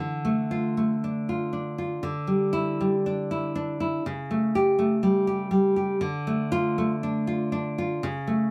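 A romantic piece for solo classical guitar in D minor, moving at a rubato 60 BPM in 2/4 with an intimate, wistful mood. The fingerpicked nylon-string guitar sits up front, full-bodied and deep in its classical tone, ranging from C#3 to G4 under light reverb. Across this brief 8.5-second excerpt cut from a longer piece, the harmony moves from Dm through Dsus24 and A7/C# before settling back on Dm.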